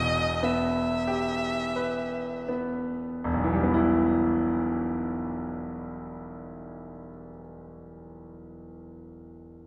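Romantic classical music for violin and grand piano, solemn and yearning in E minor, moves in a slow, rubato 3/4 around 40-49 BPM, easing back over its first 3.2 seconds as a rich, focused violin sings its melody with vibrato before falling silent at 2.5 seconds, while the bright, brilliant grand piano carries the accompaniment on until 9.7 seconds, both set up front within the spacious reverb of a scoring stage and a dark production in this fragment cut from a longer piece.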